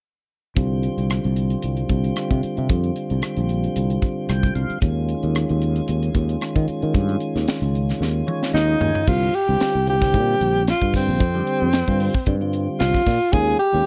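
A dry, close 1970s-style studio sound frames this slick, driving electric jazz fusion excerpt, moving at 113 BPM in 4/4 with a light sixteenth-note swing over suspended chords such as Csus4 and Eb9sus4. A round, dark tonewheel organ with key click and slow rotary speaker fills in the harmony, while a growly, bright fretless bass and a crisp, airy drum kit with a high-tuned snare and tight kick sit up front; the organ adds fills at 4.0 s and 8.0 s, the second one alongside a drum fill. At 8.5 s a clear alto saxophone enters for a jazz-style solo, its vibrato and scooped notes carrying the melody to the end.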